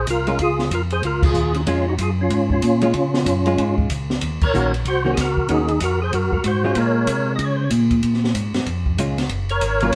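A percussive tonewheel organ carries the melody in this bluesy, smoky soul jazz organ trio excerpt, its fat, lightly overdriven tone marked by third-harmonic percussion, chorus vibrato and a slow rotary speaker, sitting up front in the mix. Beneath it, a second tonewheel organ handles the bass line with a mellow, round sound, clean apart from its key click, also shaped by chorus vibrato and slow rotary. An acoustic jazz drum kit joins almost at once, with a punchy kick, high-tuned snare, hi-hat and dark ride and crash cymbals, heard as though in a small room with a rolled-off top. A clean, compressed hollow-body electric guitar enters at 0.3 seconds with dark, picked accompaniment. The band swings in 4/4 at 189 BPM in Bb minor, moving from Bbm7 to Ebm7 and back before landing on Gbmaj7, with the whole group hitting accents at 1.2 and 4.4 seconds in a live, lightly reverberant room.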